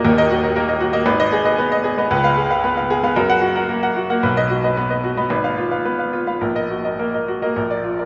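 A clear baby grand piano sits up front yet is heard from further back in a concert hall, its reverb wet and lingering at 2.3 seconds, with the top end rolled off above 7.6 kHz so the sound feels veiled and distant. This is a classical virtuoso piano study, passionate and stormy, at 113 BPM in 4/4, its beats uneven and pushed and pulled with rubato. The solo piano plays throughout the whole 8.1 seconds, ranging from a deep Eb1 up to Gb5, its natural tone carrying a short sustain that the hall extends. The harmony moves from Ebm through Abm and Db7 to Gb and B, then darkens on Fdim/Ab before settling on Ebm/Bb at 6.4 seconds. Tuned to A4 = 442 Hz, the passage is a brief section cut from a longer piece.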